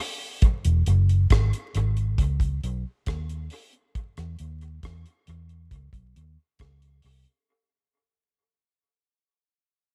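A vintage muted electric bass, played with the fingers, sits up front with a dark, round, amped tone, foam-muted and moving between E1 and E2 from 0.7 to 7.2 seconds. Beside it, a deep acoustic reggae drum kit with a tight, dry kick, hi-hat and rim click carries a dub echo, setting a laid-back yet uplifting roots reggae groove at 68 BPM in straight 4/4. Cut from a longer piece and fading out throughout, the recording has little reverb and a layer of vinyl crackle.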